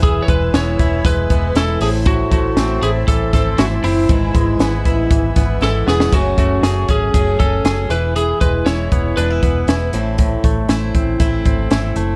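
This jangly indie pop excerpt feels bright and nostalgic, moving at a steady, straight pace in four. A lightly driven lead guitar carries the melody with a slightly broken-up, twangy edge and slapback echo, until it stops at 9.9 s. Beneath it, a clean, direct-recorded electric guitar picks compressed arpeggios, also with slapback echo, while a boxy parlour twelve-string acoustic shimmers with octave-doubled picking in the background. A vintage organ-like ensemble string pad adds mellow, warbling sustained chords with ensemble chorus, then drops out at 6.1 s. A dark, round, foam-muted fingered bass and a dry cocktail drum kit with a high-tuned snare and punchy kick anchor the groove, and a drum fill at 5.6 s leads into the second section, where the harmony shifts from E, Am and E/G# to F#madd9. Studio reverb gives the whole mix a dark, warm production.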